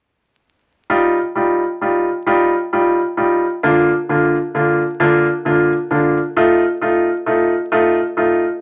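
Pop excerpt in a romantic, heartfelt 6/8 at 44 BPM in Eb major, where a bright, woody upright piano sits up front playing short-sustained accompaniment chords from 0.9 to 8.4 seconds, moving from Ebadd9 through Bb/D to F7, with a wet studio reverb and a layer of vinyl crackle around it.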